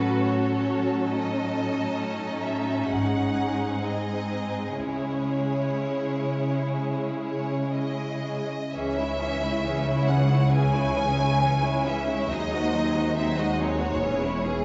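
A lush, focused violin section carries the yearning melody above a second, more distant violin line, with vibrato on every string part, in this slow, solemn romantic movement for string orchestra in C# minor, moving freely in 4/4 at around 59-71 BPM. Expressive violas and smooth, even cellos fill the middle and bass, and the bowed double basses join at 2.9 s to deepen the low end. The strings sit in a reverberant hall with a 1.7-second decay, in a passage cut from a longer piece that ends on a C# minor chord at 14.0 s.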